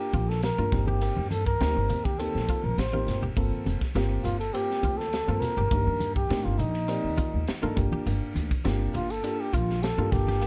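A dark, lightly reverberant production frames this funky, nocturnal electric jazz fusion excerpt in G minor at 102 BPM, cut from a longer piece and moving through Gm7, F7sus4/G, Gm11, Cm9/G and Gm9. Up front, a bucket-muted trumpet carries the melody with a veiled, breathy, whispered tone and scooped notes. It rides over a mellow, boxy baby grand piano, a woody pizzicato upright bass, and a crisp kit with a high-tuned snare and punchy kick in a pumping small room, while low-tuned congas sit close and dry in the background, a bright, twangy clean electric guitar adds very quiet stabs, and a drum fill arrives at 2.9 seconds.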